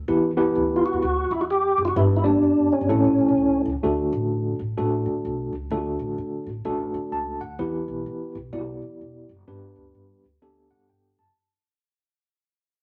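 Bathed in a wet, large-studio reverb, this joyful, danceable excerpt of uptempo 1960s-style soul swings at 128 BPM in D major, with a woody pizzicato upright bass beneath a worn, slightly out-of-tune tine electric piano that sits up front with light overdrive and medium tremolo and adds fills during the fade, while a fat, key-clicking tonewheel organ with chorus vibrato and a slow rotary speaker carries a brief melody from 0.8 to 3.6 seconds before the music fades out from 3.8 seconds.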